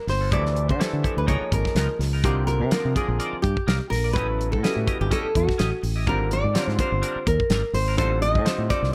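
A lightly swung sixteenth-note groove in 4/4 drives this slick, funky electric jazz fusion excerpt, where a dry, tight-kicked 70s drum kit and a growly, punchy fingered electric bass sit up front beneath a full-bodied, fingerpicked nylon-string guitar melody with audible finger squeak, while twangy clean electric guitar stabs carry chorus and plate reverb and a brilliant concert grand piano adds accompaniment over chords moving from Dm9 through A7#11 to Am7b5.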